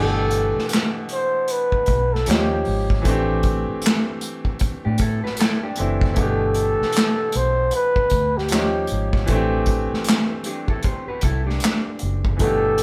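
A breathy flugelhorn carries the melody up front, close-miked and whispered, with soft attacks, scooped notes and a jazz-style vibrato that give this short neo-soul R&B clip a sensual, smooth mood. Beneath it, a clear baby grand piano comps intimately, its action noise audible and its notes ringing with long sustain, over a round, foam-muted vintage electric bass played with the fingers. An acoustic drum kit joins at 0.3 seconds with a punchy kick, a medium-tuned snare and hi-hat played with bundle sticks, plus handclaps, sitting forward in a swung sixteenth-note groove. From 4.8 seconds a mellow, clean electric guitar adds a quiet fingered second line until 12.4 seconds. The harmony cycles through G69, Eb9 and D9sus4/A twice, and a moderate stone-room reverb wraps the band, which plays live together in one space.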